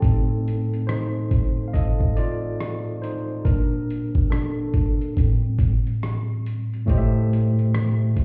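A tine electric piano leads this melancholic, hazy lo-fi hip hop fragment, cut from a longer piece, taking a solo from the start to 6.9 seconds while also carrying the accompaniment across a range from A2 to F5. Its tone is clean and sits up front, heard through built-in speakers. The harmony, in A phrygian, moves from F7/A to Bbmaj7 at 3.4 seconds and settles on Am7 at 5.2 seconds, at a slow 70 BPM in 4/4 with a 64% swing on the sixteenths. Alongside it, also up front, a dusty soul sampler-style drum kit plays hi-hat, kick drum and rim click, its thumpy kick and gritty, overdriven, compressed sound roughened by vintage 12-bit sampler grit and re-recorded in a small room. The whole mix is heard muffled as if through a wall, with light stone room reverb and EQ adding to the hazy atmosphere.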